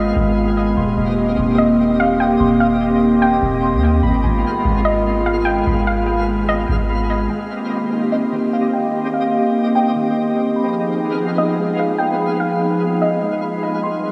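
Dreamy, blissful half-time hip hop soaked in cathedral reverb, where a warbling, nostalgic tape-like pad holds sustained chords under a soft round pluck melody, muted felt-like synth keys play mellow arpeggios, a twinkling granular texture adds sparkle, and a deep 808-style bass sits up front until 7.3 seconds, when a filter sweep carries the excerpt to its close.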